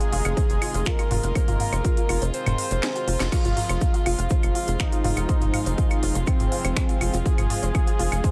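A straight 4/4 pulse at 122 BPM drives this dark, melancholic melodic techno excerpt in F minor, cut from a longer piece, with a heavy, up-front electronic kick entering at 0.4 seconds and dropping out between 2.3 and 3.3 seconds while the drum kit plays a fill from 2.8 seconds. The techno kit layers a cracking snare, smooth hats, claves, crash cymbal, finger snaps and toms, with sidechain pumping on its hats, percussion, toms and cymbals, while a grainy, close and dry egg shaker sits in the background. Underneath, a tight, punchy sequencer bass holds F1 with tube saturation and a fast, decaying filter pluck, sitting up front with sidechain pumping. A fat, detuned analog lead carries the melody between C4 and C5, its sawtooth and sub-octave tone coloured by chorus, vibrato, tape echo and a filter sweep. Around it, a woody, nasal wave-folded pluck spins arpeggios in the background with ensemble chorus and tape echo, a reedy chamber string section with gut-string tone sustains chords, and an ethereal, airy pad with slow attack and built-in reverb adds texture. 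The harmony moves from Ab/F to Fm at 3.3 seconds, all set in a digital ambience.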